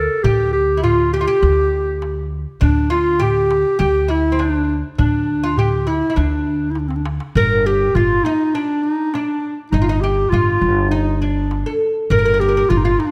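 A mellow, vibrato-rich clarinet sings up front in jazz style over a woody, plectrum-plucked fretless oud with double strings and a growly, thumpy pizzicato upright bass, joined at 0.2 s by a crisp, deep metal-shell darbuka in the background, in a soulful, hypnotic Turkish makam excerpt at 101 BPM in 4/4 with light reverb that moves from D makam ussak to G makam nihavent at 7.4 s after a drum fill from 6.8 s.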